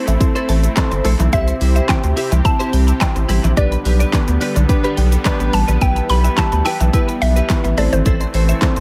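An echo-heavy mix with light reverb and digital ambience frames this euphoric, upbeat dance-pop excerpt. A woody, warbling FM mallet pluck carries the melody over a twangy, direct-recorded clean electric guitar riff, while a second, short-decaying mallet pluck traces arpeggios in the background, and a detuned supersaw swell holding sustained chords and round pulse-wave analog keys in accompaniment both breathe with sidechain pumping. A thick, saturated sub bass sits up front beside a punchy, layered pop drum kit of kick, fat snare, hi-hat, shaker and handclaps, as the chords move from Am through C and G/B to Em/B.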